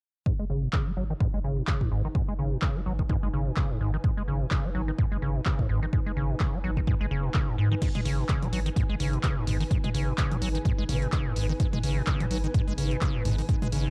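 A dry, gritty cassette-tape recording cut from a longer piece, this driving, hypnotic acid house track in G# minor at 127 BPM with a swung 16th feel opens at 0.3 s with a squelchy, resonant square-wave acid riff, given tube saturation and analog delay, joined at 0.5 s by a deep, round analog bass, both under filter sweeps until 7.8 s, over a punchy, up-front electronic kick and a tape-warm analog drum machine of hi-hat, handclaps, toms and crash cymbal, while a blurred, evolving granular cloud pad with built-in reverb drifts in at 1.1 s, the pad and both basses carrying sidechain pumping.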